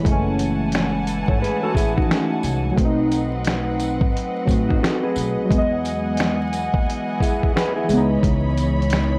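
This reflective, hazy lo-fi hip hop excerpt opens with nostalgic, warbling synth keys bathed in chorus and plate reverb up front, veiled con sordino strings holding bowed chords beneath, and a gritty, compressed sampler-style kit of thumpy kick, snare, hi-hat and finger snaps, soon joined by a woody pizzicato upright bass, a jingly tambourine in the background from 0.4 seconds and a dark, clean, fingered electric guitar with spring and plate reverb from 1.3 seconds, the swung groove sitting over vinyl crackle in a moderate room.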